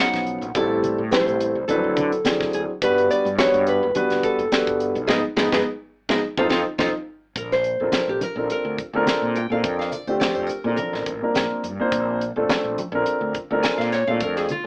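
Heard through an AM-radio filter with faint mains hum and a moderate studio room, this bright, soaring electric jazz fusion excerpt at 106 BPM, with a light sixteenth-note swing, puts a dry, high-tuned funk kit and a dark, mellow baby grand piano up front, while a direct, warm fretless electric bass, soft-handed congas in the background and a fingerpicked classical nylon-string guitar carrying the melody round out the band playing live in one room, which hits a band accent from 5.1 s and a drum fill before settling into Bb major at 7.4 s for the guitar's solo.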